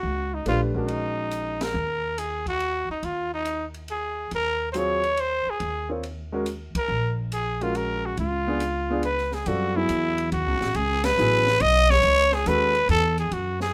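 A raspy, growling trumpet carries the melody up front in this hypnotic, cool modal jazz excerpt at 140 BPM in a swung 3/4, over woody pizzicato upright bass, short-sustained grand piano chords that drop out between 1.7 and 4.7 seconds, and a small-room drum kit with dark cymbals, a high-tuned snare and a boomy kick, as band accents punctuate the light reverb and the music shifts from Eb dorian to F# dorian at 9.5 seconds.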